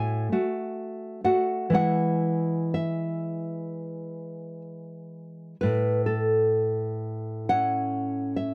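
Close and dry, with the intimate feel of a 1970s studio, this brief excerpt cut from a longer romantic piece presents a solo nylon-string guitar sitting up front, its thumb-plucked tone warm and tender. The playing moves with a flexible rubato in four, ranging from low bass notes to bright upper tones as the harmony drifts from a rootless D chord to E before settling on A at 5.6 seconds, where a new section begins and runs to the close at 8.5 seconds.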